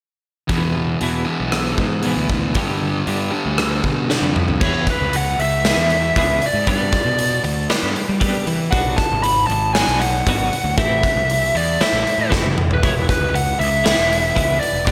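A twelve-string electric guitar chimes out bright, twangy arpeggios with tremolo and analog delay from the background, while a compressed fuzz guitar riff, overdriven fuzz bass and a punchy, up-front rock kit drive this restless, quiet-loud alternative rock excerpt at 117 BPM in 4/4. After a drum fill, the fuzz riff drops out at 4.6 seconds and a biting overdriven lead guitar takes the melody with slapback echo and analog delay over E, G, Bm and Am chords. A second fill at 12.3 seconds brings the cathartic passage back to E, all set in a lush hall reverb with a big arena sound.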